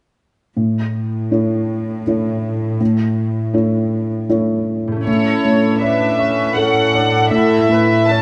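A rubato lilt in three gives this hopeful, uplifting cinematic score a slow, unhurried feel, heard as a short cut from a longer piece. From 0.6 s a soft, felt-muted upright piano sits up front with a mellow, intimate tone, carrying the accompaniment over a close cello section that holds the bass with light vibrato and a gentle bowed attack. A ringing, fingerpicked concert harp enters in the background at 4.9 s with acoustic arpeggios. At 5.1 s the music opens into its second section as a warm violin section takes the melody up front, pure and floating with a smooth top, while a sul tasto viola section fills in the accompaniment beneath it. A moderate scoring-stage reverb gives the ensemble a natural sense of space, and the soft-edged sound lends the passage a tender, emotional glow.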